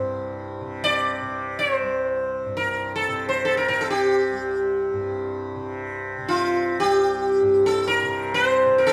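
A bright, plectrum-plucked sitar sits up front and enters at 0.8 s with a buzzing melody ringing with sympathetic strings, above a softly plucked, shimmering tanpura drone held low in the mix in this solemn, longing fragment of free-time Indian classical music in raga kafi on C, set in a moderate recital-hall reverb.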